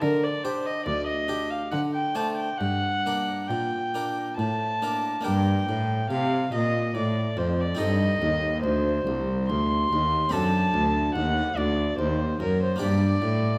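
A radiant, flowing baroque-style sonata movement in G minor opens with violin, harpsichord and cello together, moving at 71 BPM in a rubato 3/4. The solo violin carries the melody with a dark, nasal gut-string tone that sounds distant, while a bright, dry, close-miked Flemish-style harpsichord gives full plucked accompaniment and a reedy, smooth-topped period cello bows the bass line. A wet recital hall reverb surrounds the trio. A second section begins at 5.3 s and moves through Am7b5 and D7 before landing on G minor at 12.8 s, in this passage cut from a longer piece.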